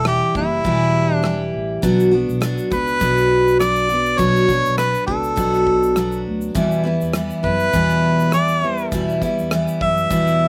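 Tender and wistful, this short acoustic pop excerpt with a gentle swing sets a smooth, up-front harmonica melody with slapback echo over a bright, full-bodied picked steel-string guitar, a woody, thumpy pizzicato upright bass, and a natural country drum kit of punchy kick, rim click and shaker, all heard dry as the chords move from Em to Bm and back to Em at 6.6 seconds.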